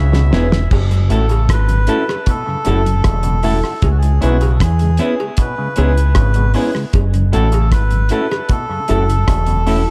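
Roots reggae at 77 BPM in F# minor, serious and laid-back, this section of a longer piece opens on a drum fill before alternating between C#m7 and F#m7. A deep, round fingered electric bass and a cloth-damped, thuddy drum kit with a fat snare and dark cymbals sit up front, while a reedy, breathy melodica carries the tune through dub echo and tube saturation. Further back, a hollow overdriven clav plays arpeggios, a slow-rotary tonewheel organ adds mellow accompaniment through analog delay, a woody, slightly detuned upright piano adds stabs, and a cowbell joins at 0.7 s. A clean picked electric guitar rings with dub echo, all set in an echo-heavy mix with light reverb.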